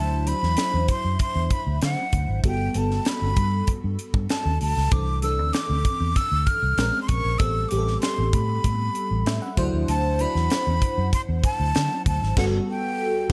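A straight 4/4 groove at 97 BPM carries this slick, nocturnal fragment of polished 1980s jazz-funk pop, where a breathy, vibrato-laden jazz flute sings the melody up front over a lush, dreamy FM electric piano with a soft pad layer, phaser and chorus, a dark, round, foam-muted fingered bass, and a crisp fusion kit joining at 0.3 seconds with a punchy kick, high-tuned snare and gated reverb, as chords move from D9 through Gmaj9, C69, Bbm9 and Am9 before an electric piano fill at 9.0 seconds and a closing band accent at 12.4 seconds.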